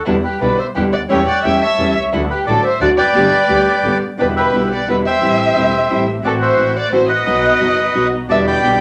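Tango in a rubato 3/4 at 175 BPM, playful and nostalgic, this excerpt moves from G major into E minor at 4.2 s. A reedy, up-front bandoneon carries the melody over a biting, bowed solo double bass with vibrato and a bright, fingerpicked classical nylon-string guitar, while an expressive chamber violin section with soft attacks sings a second line. A very quiet studio string section adds intimate, sul tasto stabs with a smooth top, and the whole ensemble sits in a wet club reverb.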